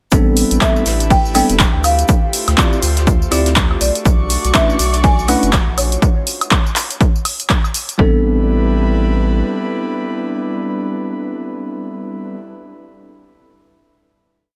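An overdriven, punchy electronic kick drives this hypnotic deep house piece at 122 BPM alongside a dry analog drum machine of claps, hats, tambourine and woodblock, a very quiet brushed kit, a round, deep syncopated bass riff, bell-like electric piano stabs with dub echo, a breathy, sidechain-pumped chorus pad and a woody marimba hook, while a muted, distant violin section holds a high note from 4.1 to 6.0 seconds, and the beat falls away after 8.0 seconds to leave a final Am11 chord.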